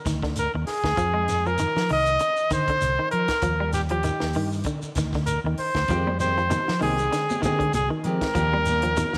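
A clear, up-front trumpet sings a smooth, vibrato-laden pop-style solo over a defiant, hypnotic afrobeat groove at 98 BPM in F dorian, carried by bright hollow-body guitar arpeggios in spring reverb, a dark, round fingered bass, a dry compact cocktail kit with a high-tuned snare and tight kick, and a grainy shekere in the background, while twangy clean guitar stabs arrive at 5.9 seconds and soft-handed, high-tuned congas join at 6.1 seconds, all set in a moderate echo-chamber ambience.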